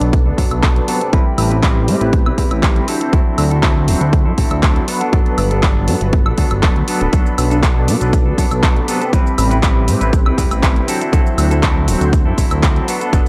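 Filtered disco house at 120 BPM in a straight 4/4, this sunny, joyful cut from a longer piece rides a filter sweep across its full 13.3 seconds over a loop of Bm7, Am9, D9 and Gmaj9. An overdriven, punchy electronic kick sits up front from 0.1 seconds, alongside a layered house kit of handclaps, hi-hat, shaker and woodblock that plays from the very start and also carries overdrive and the sound of a large room. A fat, thick sawtooth bass holds the low end, pumping with the sidechain under a low-pass filter. A bright, clean semi-hollow electric guitar picks a riff through tremolo, while a mellow, round synth brass with chorus, phaser and vibrato sits dark in the background as accompaniment. Behind them, a lush vintage string machine sustains very quiet chords with a slow attack and ensemble chorus, and the whole recording has a dry, gritty hardware character.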